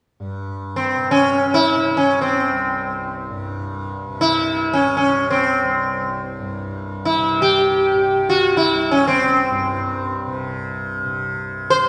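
In free, unmetered time, this devotional, radiant slice of Indian classical music opens with a softly plucked tanpura drone, buzzing and shimmering low in the background from 0.2 seconds, before a round, plectrum-plucked sitar enters up front at 0.8 seconds, its bright tone ringing with sympathetic strings, all bathed in the long, wet reverb of a concert hall.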